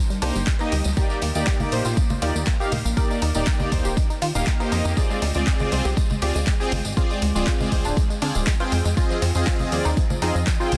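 In this expansive, bittersweet progressive house excerpt, a smooth, full-bodied supersaw plays detuned stabs up front with sidechain pumping, delay and a moving notch over a Cm7, Ebmaj7, Dm7b5 and Fm7 progression. Beneath it, a punchy, funky analog bass with a filter pluck pumps in the low register, while a lush, wave-folded unison pluck spins arpeggios through delay as a filter sweep runs across it for the whole 10.8 seconds. The groove sits at a straight 120 BPM in 4/4, anchored by a deep, layered electronic kick drum up front and a deep house kit of handclaps and dark, pumping hi-hats. A jingly tambourine, soft-handed cowbell and congas in the background, and a very quiet, distant mallet kit of hi-hat and roomy snare fill out the percussion. Light reverb and small room ambience surround a dense, heavily limited modern master.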